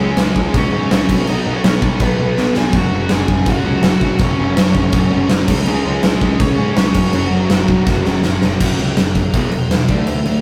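A big rock drum kit stands out most, up front with a punchy kick, fat snare and crashing cymbals in a bright stone room, coming in at 0.2 s and breaking into fills around 2.4 s and again near the 8-second mark. This is a rowdy, energetic punk rock excerpt at 164 BPM in a straight 4/4, cut from a longer piece. A double-tracked, sludgy distorted guitar picks out the riff with an overdriven edge, while a high-gain lead guitar carries the melody until 8.2 s. Beneath them, a fuzz picked electric bass sits in the background with a growly, amped tone. The harmony moves through C#5, B and F#5, shifting to E5 and D5 in a closing section from 8.6 s, all captured as a rough rehearsal-room recording with tube saturation and light reverb.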